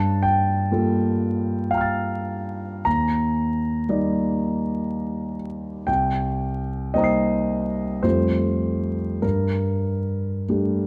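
Free, rubato phrasing in 3/4 drifts between 47 and 63 BPM in this brief, mysterious and nocturnal fragment of impressionist classical solo piano in G minor, taken from a longer piece. A concert grand plays alone for the full 10.9 seconds, spanning deep bass to high treble with an intimate, polished tone, long sustain and audible action noise, passing through Gm9, Ebmaj7, Cm7 and Fadd9 before settling on Gmadd9. Close, detailed miking places the piano up front within a moderate recital-hall reverb, while vinyl crackle adds a worn, late-night patina.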